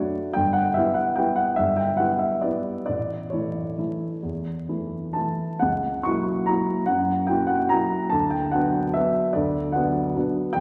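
In a flexible, rubato 3/4 lilt moving between 126 and 158 BPM, this graceful, sparkling classical piano waltz is cut from a longer piece and settles into B minor from 5.6 s. A solo baby grand piano with a warm, natural tone sits up front for the full 10.6 seconds, ranging from G1 to C#6 through Em/G, A, F#7/C# and Bm/D. A wet concert hall reverb and a layer of vinyl crackle frame the sound.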